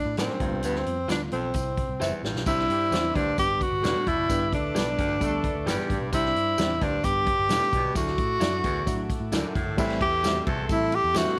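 A straight 4/4 groove at 131 BPM drives this uptempo, danceable 1960s-style soul piece in G major, cut from a longer performance. A swinging big-band drum kit with a punchy kick and medium-tuned snare sets the pace, ending its opening phrase with a drum fill, alongside a jingly tambourine and a dark, foam-muted picked electric bass that sounds round and amped. Up front, a warm, breathy tenor saxophone carries the melody with vibrato, soft attacks and scooped notes, while a clear, distant baritone saxophone plays a low riff. In the background, a barky, reedy electric piano with light overdrive and fast tremolo fills in the accompaniment, and an electric guitar through a small old amp adds slightly broken-up, compressed stabs. From 2.5 seconds a smooth tonewheel organ with key click and slow rotary speaker holds sustained chords, and a tight, vintage horn section with light vibrato adds a second line from 2.7 seconds and returns at 9.8 seconds. 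The harmony moves from G7 and C through Csus2, G and Dadd9 to a closing Am7, set in a small room with light reverb.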